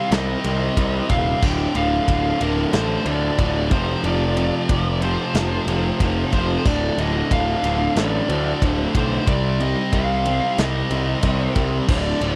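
A growly, fuzz-laden electric bass sits up front in this epic, heavy metal excerpt, driving a half-time feel from 0.1 seconds alongside a big acoustic drum kit with a tight kick, medium-tuned snare, crash and ride cymbals and a rolled-off top. Two distorted guitars play the riff, one sludgy and dark in the background and the other bright and tight, while a smooth overdriven lead guitar carries the melody through tape echo over chords moving from Cm through Dm and F. Far behind, a very quiet, lush studio string section holds sustained bowed chords with vibrato, set in a dry, close 1970s-style studio sound.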